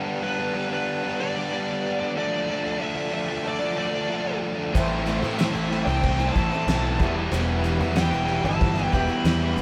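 A brooding, driving classic rock passage in A minor at 93 BPM, cut from a longer piece, moving through G, D minor, A minor and E minor. It opens with a biting overdriven guitar riff up front, a shimmering vintage string-machine violin pad with ensemble chorus sitting in the background, and a smooth overdriven lead guitar melody entering at 0.2 seconds. A mellow, twangy bluegrass banjo adds a very quiet second line from 3.4 seconds. At 4.7 seconds the full band arrives: a cloth-damped, thuddy drum kit with dark cymbals, fat snare and tight kick in the background, a raw garage guitar riff, a very quiet double-tracked cranked stack guitar, a woody upright piano and a metallic cowbell. At 4.8 seconds a round, fuzzed fingered bass joins up front, along with a boxy, octave-doubled twelve-string acoustic guitar with audible finger squeak. The ensemble sounds like a band playing live together in a stone room with moderate reverb.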